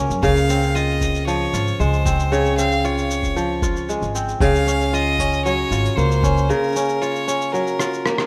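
A straight 4/4 pulse comes from a muffled, thumpy, sampler-style electronic kick drum and a compressed electronic shaker and rim click, under this delicate, pastoral folktronica excerpt, while a woody pizzicato upright bass moves beneath Dbmaj7 and Gbmaj7 chords. Up front, a crisp, ringing, fingerpicked kora plays arpeggios through a delay, and a bright violin carries the melody with an airy bow, light vibrato and its own delay. The kick stops at 6.3 seconds and the bass at 6.5 seconds for a break that closes on a drum fill at 7.8 seconds, the whole excerpt sitting in a lush hall reverb with the rough feel of a home demo.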